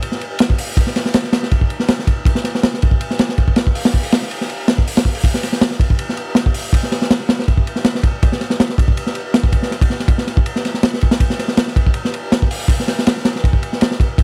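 A straight 4/4 drum and bass breakbeat drives along at 161 BPM, carried by a crunchy acoustic drum kit of kick, snare, hi-hat and ride cymbal heard alone for the full 14.2 seconds of this cut from a longer piece. The kit sits up front in a small, dry room, with a punchy kick, medium-tuned snare and dark cymbals given a saturated, gritty edge and a rolled-off top. The mood is raw yet nostalgic.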